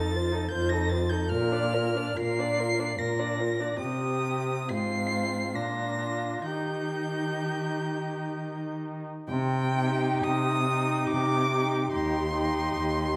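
A veiled, up-front muted violin carries the high melody in this serene, warm excerpt from a slow romantic string quartet movement in 3/4 at 60-78 BPM with free rubato, as a second muted violin adds a smooth, sliding inner line, a distant muted viola supplies soft-edged accompaniment with gentle portamento, and a dark, up-front muted cello anchors the bass with light vibrato, all within a wet recital-hall reverb as the music shifts from Eb major to C minor at 9.3 seconds.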